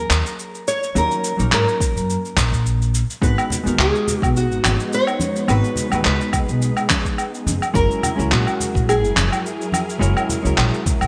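This relaxed, smooth sunset chillout excerpt opens with a bright, fingerpicked nylon-string guitar melody, coated in lush chorus and digital delay, over a dark, clean hollow-body jazz guitar accompaniment that also carries delay. An up-front upright bass, plucked and woody with a touch of tube saturation, anchors the groove. Almost at once, gritty, overdriven electronic handclaps, cabasa and woodblock sit up front with a gated reverb, and a deep, layered electronic kick drum joins at 1.8 seconds. A silky, mellow string machine with slow-attack sustained chords drifts in at 3.2 seconds, and warm acoustic congas add background texture from 3.5 seconds. The lightly swung feel, the moves through D#m7, G#m7 and F#9, and a lush hall reverb within a 1980s-style digital production keep the mood easy and polished.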